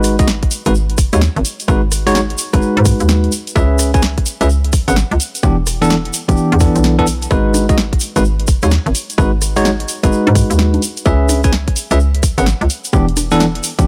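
A swung sixteenth-note shuffle drives this two-step UK garage clip, cut from a longer piece, with a soulful, late-night mood. A tight, layered electronic kick sits up front from 0.2 s, while a punchy analog drum machine with a tape-warm character supplies congas, hi-hat, rim click and a punchy snare beneath it. A grainy tube shaker, recorded with live-room air, adds bright acoustic texture. A hollow, bouncy FM bass with a fast attack and decaying notes knocks along prominently in the low register. Clean, bell-like tine electric piano stabs ride on top, direct and forward, trailed by tape echo as they move through G#m7, C#m7 and Em7. The overall sound is dry and close, with little reverb.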